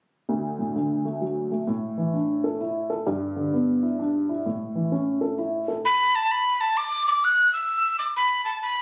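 A swung 3/4 lilt at 130 BPM carries this cheerful, rollicking Celtic waltz in D major: a dark, woody upright piano, mellow and worn with audible action noise and a slightly detuned tone, accompanies through D, Asus4, G6 and A from 0.3 to 5.8 seconds, then a breathy metal whistle with a soft, chiffy attack and unsteady vibrato takes the melody up front at 5.9 seconds, all heard through a phone recording in a small room with modest club reverb.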